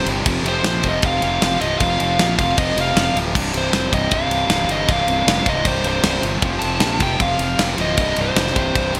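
Guitars, organ and bass strike up together, with a dark, smooth overdriven lead guitar carrying the melody over two overdriven rhythm guitars, one bright and one sludgy and set back, playing a low riff in this aggressive, menacing hard rock excerpt at 155 BPM in straight 4/4. A growly fuzz bass adds punch beneath, while a very quiet, round tonewheel organ holds sustained chords with key click and slow rotary speaker, and a tight metal drum kit enters at 0.1 s, up front with bright cymbals and gated reverb. The chords move through F5, C5 and F, and the bright 1980s-style digital production sits in a lush hall reverb.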